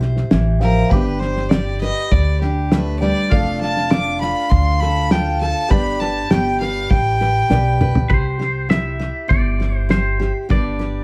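This easygoing, nostalgic slice of honky-tonk and classic country, cut from a longer piece, opens at a relaxed 100 BPM in C major with a full-bodied dreadnought acoustic guitar, a clear baby grand piano sitting in the background, a woody, thumpy upright bass played pizzicato up front, and a cloth-damped, thuddy drum kit with a fat snare and tight kick. At 0.6 seconds a single close, up-front fiddle enters and takes a solo, its biting tone carrying light vibrato and an airy, earthy bow. The acoustic guitar's picking carries audible finger squeak, while the dark, rolled-off drums keep a steady, straight 4/4 feel. A drum fill at 7.5 seconds leads into a new section at 8.1 seconds, where the piano drops away and a bright, compressed, twangy electric guitar picks out a short melody soaked in spring reverb and tape echo. The chords move gently between C, G and Dm over F, and the whole recording sits in moderate studio ambience, heard from further back in the room with a warm, unhurried glow.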